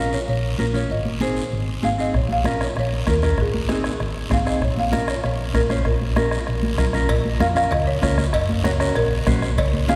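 A woody, rustic folk marimba carries the melody in this driving, fiery cumbia excerpt in Bb minor at 194 BPM, cut from a longer piece, with a dark, clean electric guitar and a round, amped hollow-body bass moving between Bb minor and Ab before a turn to Gb. A raspy guiro and bright, high-tuned congas set the groove from the start, a soft-beaten bombo joins at 2.1 seconds, and after a drum fill at 6.6 seconds ringing cowbell and timbales enter in the background at 7.1 seconds. The band plays in a reverberant church-like hall.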